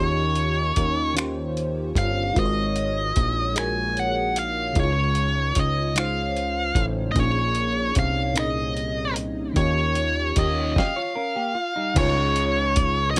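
A bright, high-gain lead guitar carries the melody up front, its distorted, picked tone singing in a high register over this slow, sensual R&B groove in 6/8 at 50 BPM in Db major. Beneath it, an FM electric piano layered with a soft pad gives lush, dreamy accompaniment, coloured by chorus and phaser, while a fat, detuned sawtooth analog bass sits thick and up front with a filter sweep. A dusty, sampler-style soul kit joins at 0.4 s, compressed and gritty, with a thumpy kick, a medium-tuned snare, finger snaps, hi-hat and crash cymbal, all carrying a tape-like patina. The intimate harmony moves through Eb13, Ab13sus4, Dbmaj9, Bbm11 and Eb9. At 10.8 s the band hits a stop as a clean, picked electric guitar slips in for a brief second line, before the music settles on Dbadd9 at 12.0 s in a light reverb, a short cut from a longer piece.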